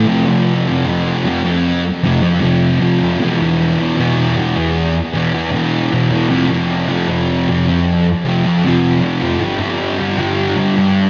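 In a straight 4/4 at 77 BPM, this dreamy, blissful rock fragment from a longer piece features a thick, dark fuzz guitar alone from start to finish. Picked and double-tracked up front between E2 and G3, it moves through F5, E5, F5 and G5 power chords with distortion, subtle chorus and delay. A huge ambient reverb with a 6.5-second tail soaks the mix in a hazy wash.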